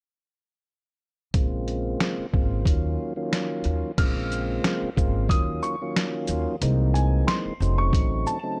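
A dark production with a digital ambience frames this short cut from a longer boom-bap hip-hop piece in Bb minor, moving at 91 BPM in 4/4 with a 55% swing on the sixteenths. At 1.3 seconds, a compressed, pitched-down, sampler-style kit arrives up front with a thumpy kick, a medium-tuned snare, hi-hat, shaker and crash. Entering alongside it are a woody, growly pizzicato upright bass on steel strings and a clean tonewheel organ through a slow rotary speaker and cassette tape coloring. A filter sweep runs across the organ through the opening section as the chords move from Bbm7 to Ebm7. At 4.0 seconds, a mellow, intimate upright piano takes the melody high in its register, its vintage tone touched with slapback echo and audible action noise. Beneath it, the harmony darkens toward C7alt and F7b9b13, giving the reflective yet tough mood a final turn of tension.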